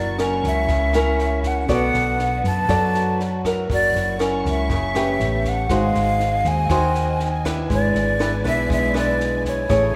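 A wet recital-hall reverb with a 1.3-second tail surrounds this breezy, sunny bossa nova excerpt, which moves at 120 BPM in a straight 4/4. A breathy metal flute carries the melody with vibrato, a soft attack, lifted highs and a somewhat unsteady tone, while an up-front, fingerpicked nylon-string guitar with a small, warm body supplies the accompaniment. Beneath them, a dark, round hollow-body short-scale electric bass, amped and fingered, holds the low end until 9.9 seconds. A distant, lush violin section sits in the background with bowed, expressive sustained chords, adding vibrato and portamento. A compact cocktail kit enters at 0.2 seconds, its dry, natural sound built on a tight kick, rim clicks and a high-tuned snare, while the harmony moves from F#7 through Bm7, back to F#7 and on through A9 to G#7 and E7/G#.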